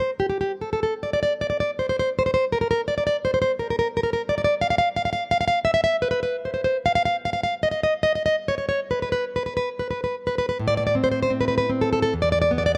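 The rhythm moves freely in a rubato two-beat metre, stretching and giving way with a wistful, passionate sway. This romantic piece is for a solo nylon-string guitar, fingerpicked in a classical manner across a span from E2 to F5. The instrument sounds acoustic and warm, set up front in a light reverb. The opening phrases float freely before the music settles, and a new passage begins at 10.6 seconds on a minor chord. It is a short excerpt that breaks off at 12.8 seconds, cut from a longer piece.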